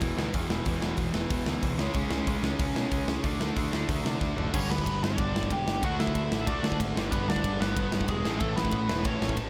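A straight, driving punk rock beat in 4/4 charges ahead from a big, up-front acoustic drum kit with a punchy kick, a medium-tuned snare, toms, hi-hat and bright crash and ride cymbals ringing in a big room. A growling picked electric bass, overdriven and heard both direct and through an amp, digs in under a thick wall of riffing guitars: a bright, cranked stack guitar, a dark, sludgy distorted guitar sitting in the background, and a very quiet, compressed, double-tracked fuzz guitar that drops out at 4.5 seconds. The opening section pounds through E5, C#5 and D5 power chords, and a drum fill at 4.2 seconds kicks the music into a second section built on G, D, G and A. There a biting, overdriven lead guitar enters with the melody, adding a rebellious edge to the rowdy mood. Light reverb lends the short cut from a longer piece some air while keeping its raw punch.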